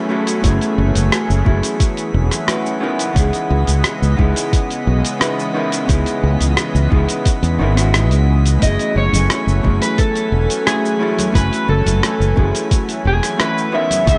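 Relaxed and wistful, this sunset chillout excerpt sets a dark, clean hollow-body jazz guitar with delay over a thick, warbling detuned pad and a glassy, drifting harmonics texture in the background, grounded by a round, up-front fretless bass, a soft overdriven electronic kick and a gritty, tape-warm sampler-style kit of hi-hat, rim click and shaker, before a slightly broken-up lead guitar enters at 8.6 seconds and background congas join at 9.1 seconds, all under light reverb.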